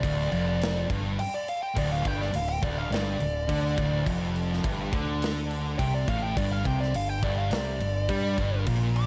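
A straight 4/4 pulse at 104 BPM drives this sludgy, brooding stretch of stoner and doom metal in D minor, cut from a longer piece and running just over 9 seconds. A big acoustic rock drum kit with a punchy kick, medium-tuned snare and crash cymbal sits mid-forward in a studio room. Beneath it, a growling fingered electric bass, direct and amped with bright overdrive, anchors the low end. Three rhythm guitars play riffs together in the background: a dark, thick fuzz guitar, a warm second fuzz guitar, and a double-tracked, overdriven electric guitar with a brighter edge. Over the top, a dark fuzz lead guitar carries a picked solo melody between D5 and D6, trailed by tape echo. The harmony holds on D minor before moving to G5 at 6.4 seconds, all within light reverb and small room ambience.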